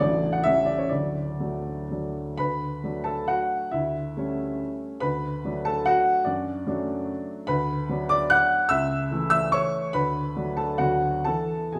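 Graceful and rustic, this brief romantic-era classical excerpt is a triple-time dance in 3/4 with dotted rhythms for solo baby grand piano, moving with a flexible, rubato pulse between 117 and 156 BPM in D major before turning toward A major at 7.5 seconds, its open, long-sustaining piano tone sitting up front and spanning A0 to F#6 within a wet recital hall reverb.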